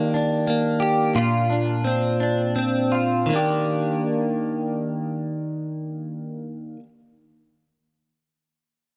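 The recording sits in a moderate concert-hall reverb with a touch of small-room ambience, giving the close, up-front guitar a sense of space around it. This brief pop excerpt, cut from a longer piece, has a romantic, swaying mood in a lilting 6/8 with a straight feel. A clean electric guitar, recorded direct and double-tracked, carries the accompaniment from the start until 6.9 seconds, its picked tone bright and compressed. The opening passage slows down through its first 3.3 seconds, moving from Ebmaj7 to Bbadd9 before the harmony returns to Ebmaj7 as a new section begins at 3.3 seconds. The result is a romantic fragment built entirely around the bright guitar.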